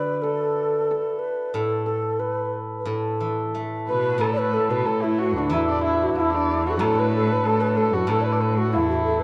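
A breathy, mellow bamboo xiao carries the graceful, pastoral melody of this Chinese traditional chamber fragment, with a shimmering hammered dulcimer and a silvery, fingerpicked steel-string zither ringing alongside it. A dark, nasal erhu and a rich, up-front cello join them with vibrato and portamento at 3.9 s, and a very quiet woodblock follows at 4.2 s, all set in a moderate recital-hall reverb with a dark, warm production.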